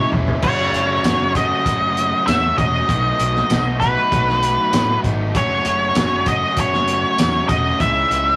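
Opening on a drum fill from a cloth-damped, thuddy kit with a fat snare and muffled, dark cymbals, this indie rock excerpt settles into a straight 98 BPM in 4/4, moving through F#m, B7 and back to F#m in F# dorian with a bittersweet, restless mood. An up-front octave-fuzz lead guitar carries the melody over two overdriven electric guitars playing riffs in the background, a bright, growly picked bass, and a very quiet, flute-like tonewheel organ holding sustained chords through a slow rotary speaker with audible key click. The rough rehearsal-room sound carries light reverb and tube saturation, and a C#m chord arrives at 7.8 seconds just before the cut.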